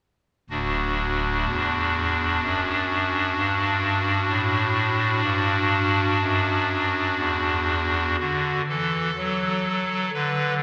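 This classical chorale-style passage for solo pipe organ, cut from a longer piece, moves with a reverent, serene calm and a freely flexing rubato pulse. The organ sits up front, voiced on a hollow clarinet reed stop with baroque character and a tremulant, entering at 0.5 seconds and shifting into a new section at 8.2 seconds. A long, wet cathedral reverb surrounds the sound, letting each chord hang in the vast space.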